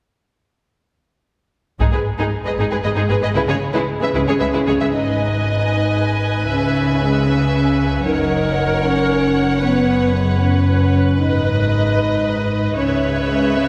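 Relentless and dramatic, this cinematic orchestral cue moves at 76 BPM in 6/8, set in G# minor and cut from a longer piece. The strings enter together at 1.8 seconds, with a taiko ensemble striking with heavy sticks for just a moment at the start, its acoustic thump carrying the air of a live room. A rich, intense viola section provides accompaniment beneath a focused violin section on a second line, while cellos and double basses anchor the bass with a smooth, even, distant weight. A mellow French horn section joins at 3.9 seconds with sustained chords in a classical style, and at 4.9 seconds a second violin section takes the melody high above, lush and vibrato-laden but placed softly in the mix. The harmony moves through G#m, C#m7, F# and Bsus2/F# before circling back, all bathed in a wet church reverb that lends the ensemble a grand, spacious hall sound.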